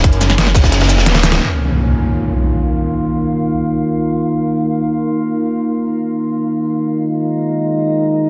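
A dark, technical drum-and-bass drop opens the clip: a tight, up-front electronic kick, a layered dubstep kit with deep snare, crisp hats and shaker, and a gritty, saturated breakbeat kit with a rolled-off top, all over a swirling, thick detuned saw bass with phaser and overdrive. An eerie, metallic FM drone sustains slow-attack chords beneath, pumping against the kick, while a drum fill closes the drop. At 1.4 seconds the drums and bass cut out for an electronic impact, and the inharmonic drone hangs on in lush hall reverb until 8.3 seconds, futuristic and mechanical in a dense, heavily limited mix.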